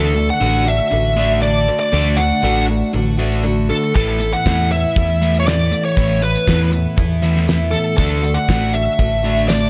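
A dark, overdriven lead guitar with tape echo carries the melody over a shimmering twelve-string acoustic, a crunchy double-tracked electric riff and a round, punchy dub bass, moving from D to Asus2 and back in this hopeful, nostalgic folk and heartland rock excerpt at 119 BPM, with a dry 70s drum kit and its fat snare joining at 4.0 seconds under light studio reverb.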